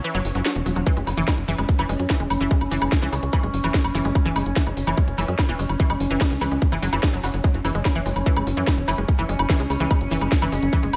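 Psychedelic trance with a driving, hypnotic pull, cut from a longer piece, where a wave-folded drone with moving overtones holds sustained chords under chorus and reverb while a lush, warbling, detuned unison pluck plays a riff through diffuse ambient delay; both pump against the sidechain, as a garage drum kit with a cracking, overdriven snare, hi-hat and woodblock plays alongside a tight sawtooth sequencer bass that is punchy and up front, until an overdriven electronic kick drum lands at 0.9 s after a brief break.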